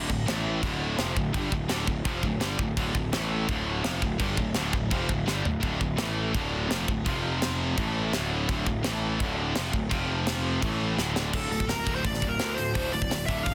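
A dense, heavily limited modern mix with light reverb carries this aggressive, epic heavy metal passage in D minor at 168 BPM, as three bright, picked rhythm guitars (a scooped high-gain part, a high-gain part in the background and a double-tracked tight part that stops at 11.3 seconds) drive the riff over a growly, fuzz-soaked bass and an airy, up-front drum kit with a high-tuned snare and tight kick, before a warm high-gain lead guitar takes the melody at 11.3 seconds.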